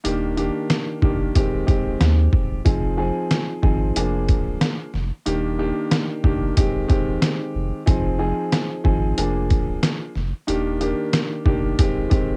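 Heard through light reverb on a home cassette recording, this moody, gritty boom-bap hip-hop excerpt moves at 92 BPM in 4/4 with a swung sixteenth feel. An up-front, woody upright piano accompanies through repeating Ebmaj7, Abmaj7/Eb, Fm7 and Bb7 chords, its vintage tone filtered and cassette-tinged, while a compressed, pitched-down sampler-style kit brings a thumpy kick, medium-tuned snare and hi-hat to the front. Beneath them, a deep, round dub sub bass enters at 0.1 seconds with a fast attack and sustained tone.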